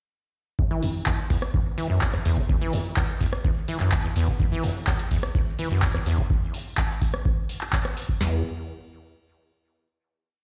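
Acid house with a raw, playful mood, moving in a straight 4/4 groove that runs from 0.6 seconds until a final note rings out from 8.2 to 10.4 seconds. A squelchy, resonant sawtooth acid bass sits up front, playing a 16-step riff with accents and slides, its plucked filter attack decaying quickly, colored by overdrive, subtle chorus, delay and sidechain pumping. A booming analog drum machine drives a four-on-the-floor deep kick with a crisp snare and crash cymbal, while a second analog kit adds programmed metallic hats, handclaps and rim clicks on the backbeat, both carrying a tape-warm tone. From 4.4 to 6.2 seconds a gritty, pitched-up, compressed breakbeat loop with edits drifts in the background, its hi-hat, medium-tuned snare and tambourine thinned by high-pass filtering and pumping. The whole piece has the sound of a big system played in a bare stone room, with light digital reverb around it.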